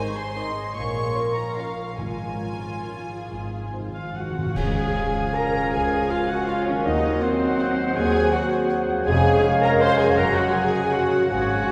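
A rubato 3/4 lilt between 132 and 175 BPM carries this sweeping, elegant orchestral ballroom waltz excerpt in Db major, where floating sul tasto violins sing the melody and a second line over woody, lush violas, ringing fingerpicked harp arpeggios and mellow French horn chords; rich cellos and dark bowed double basses take the bass from 0.8 s, very quiet close timpani play a fill from 3.3 s, a bright oboe enters at 3.9 s, and at 4.6 s a distant clarinet, airy hollow flute, warm bassoon and roomy trumpet stabs arrive with a crash of cymbals and concert bass drum, the orchestra heard in a wet cathedral reverb.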